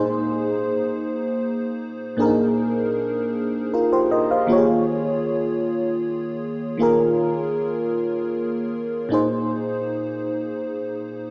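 Heard through a small speaker and bathed in a wet church-like hall reverb, this tender, sensual slow R&B fragment at 52 BPM in a straight 6/8 features a lone FM electric piano with a soft pad layer. Its dreamy, mellow chorused tone, with fast-attack, decaying notes, sits up front as it moves from Bb9sus4 to Eb9sus4 at 4.5 seconds and back to Bb9sus4 at 9.1 seconds.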